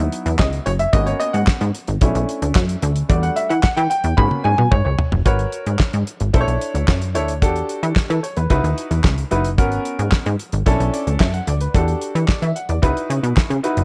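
A clear baby grand piano leads this late-night, funky slice of early-eighties boogie funk, taking a solo through the opening 5.3 seconds with a natural, short-sustained tone that sits up front. Beneath it, a plucky analog bass blends sawtooth, square and sine waves with a wave-folded edge, its fast attack and decaying filter pluck giving the low end a punchy, funky bite. A damped 70s drum kit enters at 0.1 seconds with a dry, acoustic sound: a fat snare, a tight kick, hi-hat, handclaps and toms, all with a rolled-off top. A drum fill from 4.2 to 5.3 seconds carries the groove into the second section. The straight 4/4 pulse moves at 111 BPM over a cycle of minor eleventh chords on C#, G#, B and E. The small room ambience and dark, warm production round out this piece, cut from a longer track.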